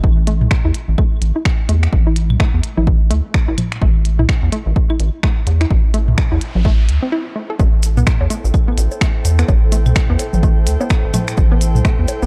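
A swung 127 BPM minimal techno groove in A minor opens with a punchy, tape-warm electronic kick up front and a rubbery square bass pumping against it, joined within the first second by a hollow square pluck riff with chorus and dub echo, clicky finger snaps and hi-hats from a large-room click kit, and dry analog toms, claves, congas and bongos through digital delay. The hypnotic, sparse mood holds until a noise sweep from 6.1 seconds leads into a short break and a drop at 7.6 seconds, where grainy acoustic maracas enter and the harmony shifts to Am7. Shortly after, an airy, breathy pad and a very quiet, bubbling stepped-filter texture fill in the dark, nearly reverb-free mix of this excerpt from a longer piece.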